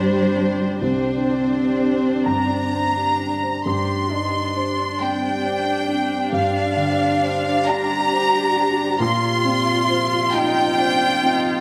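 Neoclassical piano and strings in a rubato 6/8 at around 41-46 BPM, tuned to A4 = 438 Hz and steeped in melancholic longing, where an up-front violin section sings a smooth, vibrato-laden melody over an expressive solo cello second line with portamento, a focused single viola, a soft felt-muted upright piano with an intimate, mellow tone, and a deep, moody detuned pad with chorus sitting in the background, set inside a moderate concert hall reverb as the harmony moves from Csus2 to Gsus4 at 3.7 s and Bbsus2 at 9.0 s in this short cut from a longer piece.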